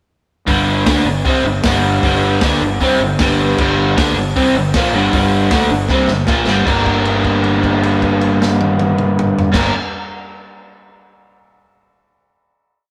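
Captured with light reverb as a band playing live in one room, this short, complete garage rock piece in G minor charges along at 155 BPM with a raw, menacing mood, led by an up-front, biting overdriven guitar playing a double-tracked power-chord riff through spring reverb from 0.5 seconds. Underneath, a round, punchy fuzz bass drives eighth notes that double the riff, while a crunchy breakbeat kit with gritty saturation, dark cymbals and a tight kick pounds out a garage stomp groove. A drum fill at 5.9 seconds leads into a final chord held from 6.7 seconds to the close.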